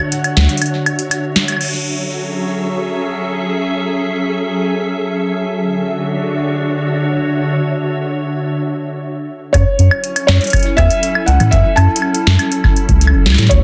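IDM in an intricate, glitchy mood, cut from a longer piece: a glassy, ethereal FM pad with ensemble chorus and built-in reverb holds mellow, up-front sustained chords throughout, moving between Dmaj7 and F#m7. A felt-muted upright piano carries a soft, intimate melody with audible action noise and digital delay, and a booming analog drum machine with crisp snare, metallic hats, claves, toms and crash brings a tape-warm, large-room punch, also touched with delay. Both appear briefly at the start and return at 9.5 seconds, alongside a round, dark, wave-folded analog bass and a deep electronic kick, while the pad carries the long middle stretch alone under a dense, heavily limited master.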